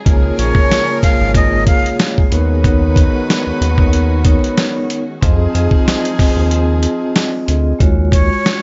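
Boom-bap hip-hop at 93 BPM with a lightly swung 16th-note feel, dark and tough in mood, this short cut rests on gritty, compressed sampler-style drums with a thumpy kick (muted from 6.5 to 7.8 seconds) and a deep, round analog bass with a ring-modulated edge, both up front over Bbm7, Bmaj9/D#, Fm7 and Ebm11 harmony. A ringing, metallic vibraphone carries the accompaniment through a cassette-tape haze, while jazz-style horn stabs echo through digital delay and a woody, lush string section sustains chords in the background. A breathy flute with vibrato sings a brief melody from 0.4 to 2.0 seconds and returns at 8.1 seconds, all set in a small room with vinyl crackle and a muffled top end.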